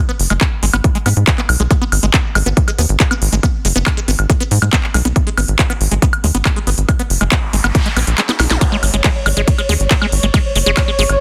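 A dense, heavily limited digital mix carries this alien, psychedelic trance excerpt, where a heavy, up-front electronic kick and a techno kit of cracking snare, smooth hats, ride cymbal, handclaps and woodblock drive a tight, punchy, nasal sequencer bass with tube saturation, while a squelchy, resonant, bright acid riff plays with phaser, sidechain pumping and digital delay. A noise sweep and zap arrives at 7.4 seconds, the kick briefly drops out around 8.2 seconds for a drum fill, and from 8.6 seconds a bubbling, detuned stepped-filter texture sustains mellow chords with chorus, reverb and pumping.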